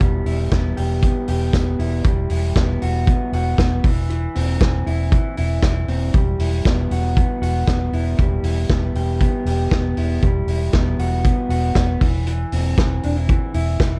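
Dark, lightly reverberant production frames this wistful, bittersweet jangly indie pop excerpt, where a slightly broken-up, lo-fi electric guitar through a small old amp picks arpeggios with spring reverb and slapback echo over a round, foam-muted vintage fingered bass and an up-front, gritty vintage drum kit with punchy kick, medium-tuned snare and hi-hat, as the chords move between Em, Emadd9 and C/E.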